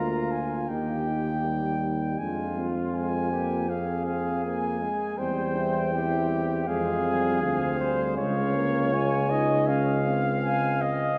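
A mellow flugelhorn with light vibrato sits up front in this noble classical brass quintet passage, carrying a second line beneath a close-miked cornet melody. A soft-attacked tuba, also up front, anchors the bass, while a distant, roomy French horn and a close-miked trombone supply accompaniment from the background, the trombone stopping at 10.9 s just before the close at 11.2 s. The harmony moves from Bb/D and Eb through Fm, C/E and Db in a wet concert-hall reverb, in a section cut from a longer piece.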